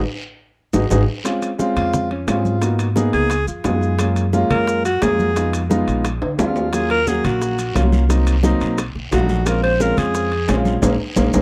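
Afro-Cuban jazz at 175 BPM, fiery and sophisticated and cut from a longer piece, opening with a brief piano solo, a drum fill and a band accent. From 1.8 seconds a breathy alto saxophone with light vibrato, scooped notes and tape echo solos over an intimate grand piano with audible action noise, a woody pizzicato upright bass up front, bright damped congas, tight high-tuned bongos, ringing metal-shell timbales, grainy maracas and a raspy guiro that returns at 6.7 seconds, captured in a dry, close 1970s-style studio with light reverb.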